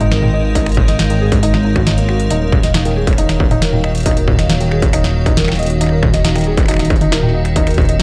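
Dark, warm production sits in a moderate echo chamber that lends a lingering two-second tail, giving this short IDM passage a cerebral, intricate mood at 137 BPM in straight 4/4, in E-flat minor. An icy, crystalline glass pad holds sustained chords from the start, its slow attack and long release shimmering with chorus, built-in reverb and a vintage 12-bit sampler grit. Alongside it, a felt-muted upright piano plays soft, mellow arpeggios with audible action noise and tape echo, while a deep, rumbling detuned saw bass sits lower and louder, its saturated tone beating against itself. A booming analog drum machine supplies finger snaps, metallic hi-hats, a crisp snare and toms, all tape-echoed, and an electronic kick drum with distortion and a small-room character joins at 0.6 s as the loudest element. The harmony moves from an Ab5 chord to Ebm7 at 2.3 s, cut from a longer piece.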